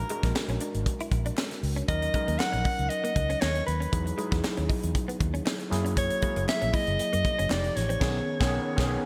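A tight funk drum kit with a high-tuned snare, crash, hi-hat and gated reverb drives this lightly swung 118 BPM slice of polished 1980s jazz-funk pop, where an up-front soprano saxophone sings a bittersweet, nocturnal melody with vibrato and subtone over gritty overdriven electric piano with subtle chorus, a dark foam-muted fingered bass, a compressed clean guitar riff with ensemble chorus sitting in the background, very quiet crisp handclaps and chords moving from A#7alt through Emaj9 and F9, all bathed in a lush hall reverb and bright digital sheen until a band accent at 8.0 s closes the excerpt on B69.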